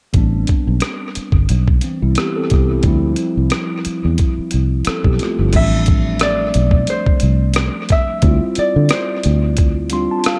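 Soulful and smooth, this short neo-soul and R&B excerpt moves at 89 BPM in A minor with a gentle 16th-note swing. A gritty, compressed boom bap drum kit with a thumpy kick, rim click, hi-hat and crash sits up front, its tape-warm sampler character carrying the air of a large room. A dark, round fingered electric bass, foam-muted and direct, holds the low end just as close, while a clean tine electric piano heard through its built-in speakers lays down Am9 and Dm9 chords with a dub echo trailing behind. At 5.6 seconds a fingerpicked concert harp enters with a ringing melody between C5 and E5, also washed in dub echo, as the harmony shifts to Am7 before returning to Dm9. The electric piano closes with a short fill from 9.6 seconds, and the dry, echo-heavy mix keeps a dusky, rolled-off top end throughout.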